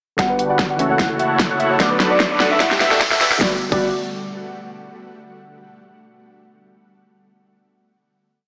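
Future bass at 149 BPM in a half-time 4/4 feel with light swing, playful and euphoric in G lydian, where a velvety, chorused synth lead with tape echo and vibrato carries a repeating riff over soft round plucks playing drop2 chords and an 8-step arpeggio, a dense compressed supersaw under a sweeping low-pass filter, a saturated sine sub bass, all pumping to the sidechain, plus a very quiet ethereal pad entering at 1.6 seconds and a riser from 1.5 seconds, while an overdriven big-room kit with huge snare, metallic hat rolls and crash drives a drum fill and build-up with a punchy electronic kick into a final Gmaj7 chord at 3.4 seconds, all in a lush hall with a thin, small-speaker sound.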